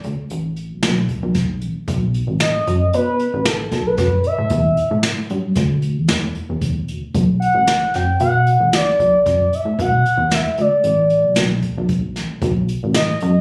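Captured on a phone in a club-like room with light reverb and compression, this tense, driving progressive instrumental in 5/4 is a fragment of a longer piece. A punchy, wave-folded analog bass with a plucky filter and a brushed acoustic kit with a boomy kick run from the start. At 2.4 seconds a nasal, expressive lead with chorus, vibrato and gliding portamento enters over a progression moving from B7 through E7(no3) to Bm.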